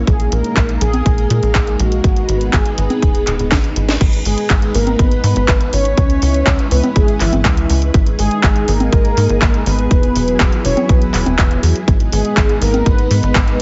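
Heavily compressed, radio-like sound with light reverb frames this nostalgic, danceable italo disco piece in G# minor at 122 BPM, where a punchy overdriven electronic kick and a house kit with cracking snare, congas, handclaps, hi-hat and crash cymbal drive alongside a tight, saturated sawtooth sequencer bass, lush vintage string-machine chords with ensemble chorus, and a brassy, detuned synth-brass melody colored by chorus, cassette tape and digital delay, with a drum fill at 3.5 seconds leading into the second section at 4.0 seconds.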